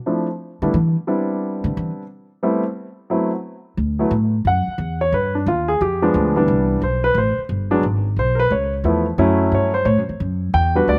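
Captured dry in the open air, the recording has a close, up-front sound with almost nothing of a room around it. This is a warm, relaxed jazz piano trio excerpt swinging along at 178 BPM in 4/4, settling into D major at 3.8 seconds. The upright bass, plucked pizzicato on steel strings with a woody tone, enters at 0.6 seconds and takes the opening solo. From 3.8 seconds the concert grand piano carries the solo, its polished, present tone rich in the low end, with short sustain and a slapback echo. Colorful harmonies pass by, from Am9 and F#m7b5 through Dadd9, G7b9 and Cmaj9 to C#7alt and F#m7, before the passage is cut off at 11.0 seconds.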